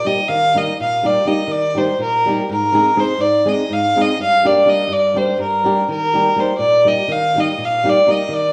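A single bowed fiddle carries the melody up front, its tone rich, nasal and earthy with a slightly distant quality. Beneath it, a fingerpicked flamenco guitar plays accompaniment, its fresh strings giving an acoustic, warm sound across a broader range. The music is exuberant, virtuosic Balkan folk in an asymmetric 7/8 metre with a straight feel, moving through a short cycle of major and minor chords. Both parts play together from the start to the close of this 8.5-second fragment, cut from a longer piece. A moderate plate reverb adds a lingering tail over a rough, homespun demo mix.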